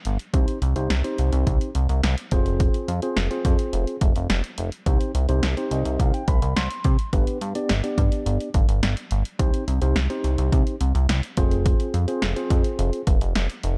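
A dark, lightly reverberant digital ambience frames this melancholic yet driving synth-pop excerpt at 106 BPM in C harmonic minor, moving through Cm, Fm and G. An up-front, punchy analog drum machine and a glossy, nasal chorused synth bass, built from pulse and sawtooth waves with a plucked filter and a moving notch, run from 0.1 s to the end. A mellow, clean tine electric piano heard through its built-in speakers fills in accompaniment and plays a short fill at 5.4 s.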